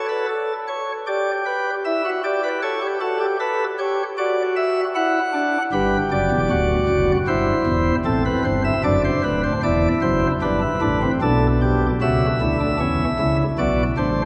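A solo pipe organ stands up front, its flute stops light and sparkling, with a baroque voicing and a distinct chiff at the start of each note. The music is a joyful, lively three-part fugue in a classical, baroque style, moving in a straight 4/4 at a steady walking pace. The organ spans from deep pedal notes up through a bright treble register. The harmony moves from Em7/G and A toward D/F#, G, Am7, D and back to G by 10.4 seconds, then turns toward F#5/C# and closes on Bm. Heard in a church or concert hall, the playing blooms into a long, wet cathedral reverb that lingers well after each phrase, and this short passage is cut from a longer piece.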